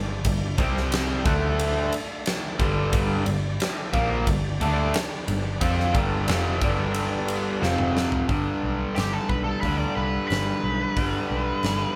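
A crunchy, double-tracked overdriven guitar riff leads this raunchy, driving blues rock and southern rock excerpt in a straight 4/4, backed by a huge arena drum kit with a fat snare, punchy kick and bright cymbals, a round, foam-muted vintage bass, and a very quiet, gritty tonewheel organ holding sustained chords through a slow rotary speaker until 8.3 seconds. A drum fill closes out that stretch, and a bluesy lead guitar with wah, distortion and digital delay enters at 9.0 seconds, all played live in one room with light reverb.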